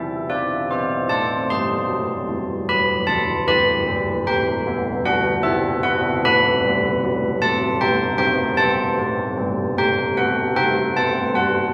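Serene yet festive, this short classical fragment of a church-bell tune in triple time features a solo set of old church bells, bronze and clangorous with a minor-third overtone and the strike of an iron clapper, sitting up front in a lush concert-hall reverb as it moves from C through A minor and E minor before settling on an open B and C.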